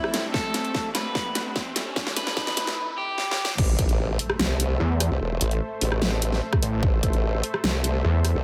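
Driving a half-time 4/4 pulse at 148 BPM in A minor, this heavy, aggressive wobble dubstep excerpt opens with a twangy, slightly broken-up electric guitar melody through digital delay, a lush sidechain-pumped supersaw pad, dark bowed strings, a background riser and a drum fill from the up-front kit with its huge snare and punchy electronic kick, before the drop at 3.6 s brings in a chorused formant-sweep wobble bass, joined at 4.8 s by a snarling, growling distorted saw bass.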